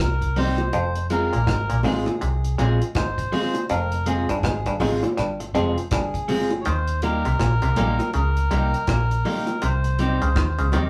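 Meditative and laid-back, this short roots reggae excerpt swings gently over a round, dark fingered bass and a dry drum kit with a tight kick, hi-hat and rim click, while a reedy, breathy melodica carries the melody above a slightly broken-up picked guitar from 0.4 s, soft low-tuned bongos in the background, and a twangy, hollow muted clav riff from 0.7 s, all set in a small live room moving from Eb to Fm and closing on Cm.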